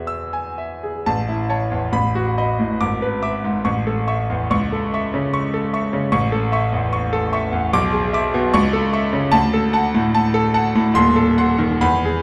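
A brilliant, up-front concert grand piano with deep bass carries this romantic character piece alone, its lyrical, passionate line moving in a flexible rubato over a two-beat metre. The harmony wanders from tonic chords toward a D chord at 9.3 seconds and a tense diminished seventh at 11.0 seconds, and the passage breaks off unresolved as part of a longer work. A wet recital-hall reverb surrounds the playing, and the overall production has a dark, warm cast.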